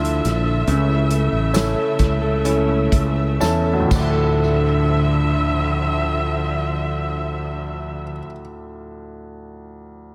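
Emotional and melancholic, this short pop ballad fragment in D harmonic minor moves at a slow 57-72 BPM in a straight 4/4, easing down in tempo through its opening 4.4 seconds. A clear, intimate concert grand piano carries the accompaniment from D2 to A5, its action noise audible and its deep bass up front, while a lush, bowed studio string section holds sustained chords with vibrato and a smooth top. Underneath, a fretless electric bass sits growly and punchy, and a full-bodied jumbo steel-string acoustic guitar, plugged in and fingerpicked, spins arpeggios in the background with the occasional finger squeak. A natural country drum kit with dark cymbals, a medium-tuned snare and a punchy kick plays through 4.1 seconds with tape echo, joined from 1.5 seconds by a jingly, close-miked tambourine, also echoed, sitting in the background of the mix. The harmony moves from Dmadd9 to A and back to Dmadd9, with a piano fill from 2.9 seconds and a drum fill beginning at 3.4 seconds leading into the second section, all set in an echo-heavy mix with light reverb and small room ambience.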